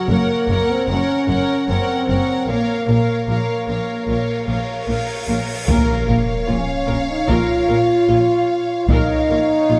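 Cinematic, epic orchestral film score in Bb minor at 75 BPM, relentless and dramatic, cut from a longer piece: an up-front French horn section holds sustained chords over bowed, vibrato-rich strings, with focused violins carrying the melody and a second line, lush violas in accompaniment, and a clear double bass section joined by distant cellos on the bass as the harmony moves from Gb to Bbm. Close, dry taiko drums struck with hard sticks hit briefly near the start and return at 5.7 s, where a huge, bright cymbal swell and sub drop that began at 4.3 s lands as an impact, alongside a round, soft-mallet timpani in the background. The whole ensemble sits in a wet scoring-stage reverb.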